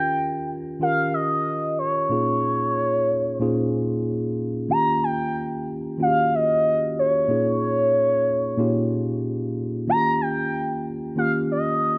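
Lightly swung sixteenths at 93 BPM in 4/4 carry this bittersweet, smooth soul fragment, cut from a longer piece, as a worn, slightly out-of-tune tine electric piano with subtle chorus rocks between Eb7 and Bbm7 throughout its 12 seconds. Up front, an expressive portamento lead with a dark, warbling, wave-folded vintage tone sings the melody in a high register, its sustained notes colored by chorus and vibrato. A moderate plate reverb wraps the pair in a gentle 2.4-second tail.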